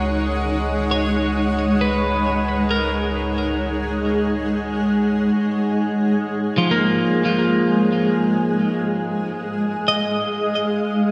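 Melancholic and reflective, this ambient passage at 67 BPM is cut from a longer piece and drifts in a lush hall reverb, with a bright, blurred granular cloud pad holding sustained chords, its detuned shimmer set up front, while a clean, compressed twelve-string electric guitar picks arpeggios through spring reverb, tape echo and shimmer reverb. A deep, round sub bass sustains a single C#2 beneath them until 5.3 s. The harmony moves from C#13sus4 to G#sus2 at 5.4 s, and the whole mix feels dreamy and soaked in reverb.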